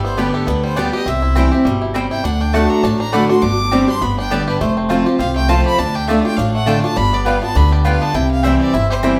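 Bluegrass at a brisk, swung clip, this short excerpt from a longer piece sounds virtuosic and rustic, with a clear, focused fiddle carrying the melody as a solo throughout, its bowed line touched with light vibrato and a plate reverb. Beneath it, a bright, boxy parlour-style steel-string acoustic guitar sits up front with its picked accompaniment, fresh strings ringing. A twangy bluegrass banjo played with fingerpicks adds percussive arpeggios, while a mandolin enters at 0.2 s with woody, double-strung stabs. The upright bass, plucked on gut strings, gives a thumpy, warm low end that also sits close to the listener. The ensemble is heard from further back in a large studio with a wet reverb, and the harmony moves through chords such as G, C, D, Gsus4, F, Dm and G7 before settling on C.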